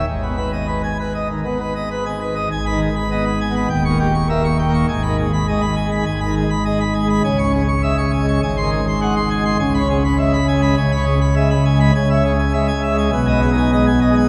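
Classical organ toccata in G# minor at 102 BPM, majestic and stormy, in which a solo pipe organ on full plenum with brilliant mixtures, baroque voicing and audible chiff spans D#1 to C#6 and moves through G#m, D#7b9 and C#m harmonies, all bathed in a wet cathedral reverb with a 4.8-second decay in this 14.3-second excerpt from a longer piece.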